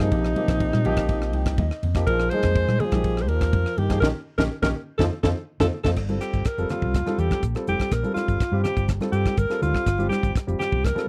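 A tight, straight 4/4 groove at 123 BPM drives this funky, nocturnal piece of electric jazz fusion, cut from a longer recording and settling into G minor from 6.0 seconds. The up-front funk kit pairs a high-tuned snare and tight kick with bright cymbals across hi-hat, ride, crash and rim click, while a round, punchy fingered electric bass sits dark and amped beneath it, and ringing, soft-handed congas enter at 0.4 seconds in the background. A warm grand piano supplies the accompaniment and adds a fill early on, as a forceful alto saxophone with vibrato and a smooth top carries the melody through a slapback echo. A mellow, whispered trombone plays a breathy second line in the background until 5.9 seconds, and the whole band hits an accent as a drum fill leads into the saxophone's solo. The sound is dry and close, in the manner of a 1970s studio session, with little reverb.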